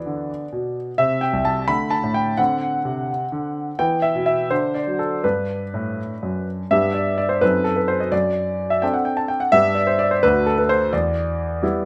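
Lightly reverberant and intimate, this cheerful, elegant classical-period piano sonatina excerpt in G major moves at 85 BPM in a straight 6/8, with a solo concert grand sitting up front, clear and natural in tone, rich in deep bass, and showing audible action noise as it spans C2 to B5, shifting at 6.7 seconds into a second section that passes through F#dim7 and D7/F# before ending on Em7.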